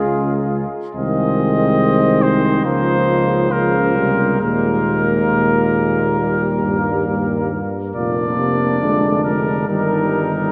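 A vintage-toned trumpet carries the melody up front in this stately, noble classical excerpt for brass quintet, moving at a rubato 69 BPM in 4/4, with a clear flugelhorn beneath it adding a second line touched by light vibrato. In the background, a French horn with light vibrato and a mellow, soft-attacked trombone supply accompaniment, while a warm, present tuba anchors the bass. All five play together throughout the 10.5 seconds, moving through harmonies from Db to Eb/G, and are wrapped in a huge, wet reverb that places them in a vast, echoing space.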